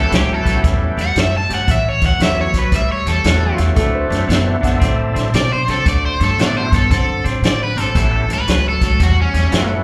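Heard through a club's PA with a light room reverb, this swaggering, rollicking electric blues shuffle fragment puts a bright, overdriven stack guitar melody up front over a gritty organ with key click and slow rotary swirl, a clean picked guitar riff, woody pizzicato upright bass and a vintage kit with fat snare, punchy kick and rolled-off top, while a dark, slightly detuned upright piano slips in behind from 3.8 to 4.9 seconds as the A7 moves to D7 before returning to A7 at 7.9 seconds.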